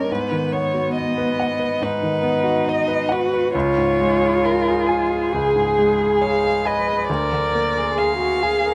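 Set in a gentle 4/4 at 68 BPM with a freely breathing rubato, this short slice of a slow romantic movement for piano trio feels tender and lyrical. A single muted violin carries the melody, its bowed con sordino tone veiled and close, with soft attacks and a singing vibrato that sits up front. Beneath it, one muted cello plays a second line, dark and veiled with a smooth top end, sharing the violin's vibrato and gently bowed onsets. The grand piano supplies the accompaniment across a broad span from C#2 to G#5, its clear, intimate sound placed up front, with the natural noise of the action audible. The harmony moves from G#m7 through C# to A#7/D, and a light reverb gives the trio a modest sense of space.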